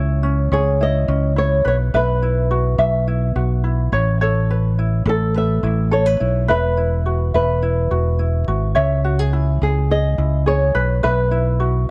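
Acoustic pop in E major at 106 BPM, this sunny, carefree excerpt pairs a light, thumb-plucked ukulele accompaniment with a round, up-front fingered electric bass, while a dark, boxy flamenco guitar enters at 0.5 s to carry the melody with audible finger squeak over a C#m, Bsus4, Aadd9 and Esus2 progression, all set in light reverb and studio ambience.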